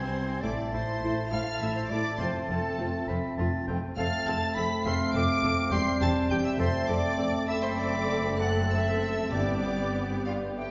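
A rich, focused violin section carries the melody with vibrato through this lively, spirited excerpt from a quick classical-period orchestral movement in 6/8 with uneven beats and flexible, rubato timing. A clear oboe, a smooth-topped clarinet, an airy metal flute and a lush second violin section weave supporting lines, while a distant, mellow bassoon and a bowed viola section fill in the accompaniment over mellow French horn chords and a cello and double bass foundation. Timpani struck with medium mallets enter at 9.3 seconds as the harmony arrives on G, all set in the reverberant wash of a concert hall.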